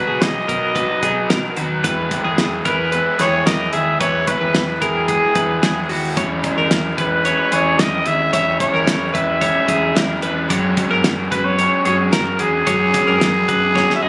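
Jangly indie pop at 111 BPM with a youthful, nostalgic mood, cut from a longer piece, where a growling, raspy trumpet with analog delay carries the melody up front over a lo-fi overdriven garage guitar, bright twangy twelve-string electric guitar arpeggios, a dark, round hollow-body bass entering at 0.1 seconds and a cloth-damped, thuddy drum kit with a fat snare that closes on a fill at 13.8 seconds, all caught on a phone in a club-like room with light reverb and compression as the chords move from B through E and C#m to F#sus2.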